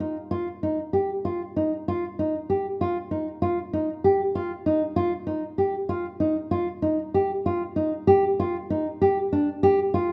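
In a straight 5/8 metre, this playful, hopeful contemporary instrumental excerpt features a solo nylon-string guitar, up front and heard throughout, with a dark, full-bodied, deep classical tone. Its thumb-plucked notes sit in a narrow range, with audible finger squeak. The guitar rings in a moderate recital-hall reverb, and the opening section gives way to a new one at 8.1 seconds before the recording cuts off at 10.1 seconds.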